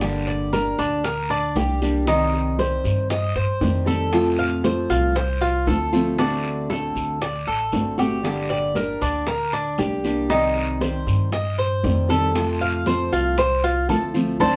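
A bright, fingerpicked nylon-string guitar with audible finger squeak and a woody, thumpy pizzicato upright bass open this danceable Cuban son and guajira excerpt together with hand percussion: round, saturated bongos, high-tuned congas with a thick skin, a raspy guiro and grainy, mellow maracas. From 0.3 s, a metallic Cuban tres with double strings plays picked arpeggios up front beside the guitar over a repeating chord progression. The band plays live in a small room with moderate reverb, with the bongos, congas and maracas set in the background, and everyone hits a shared accent at 14.4 s.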